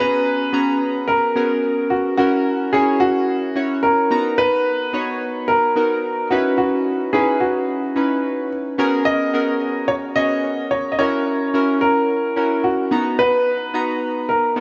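Pop with a nostalgic, glossy mood, this short passage cut from a longer piece moves at a straight 4/4 pulse of 109 BPM. A clear grand piano carries the melody in an intimate, natural voice, sitting up front with its action noise audible and a digital delay trailing its notes. Alongside it, chorused retro synth keys supply the accompaniment, a bright pulse-wave and sawtooth blend with pulse-width modulation, a filter sweep and a fast attack that decays. Both parts play together throughout, from 0.0 to 14.6 seconds, over a cycling progression of G#m11, F#7, Bmaj7 and C#m9. A moderate, lush hall reverb surrounds the pair with a long tail.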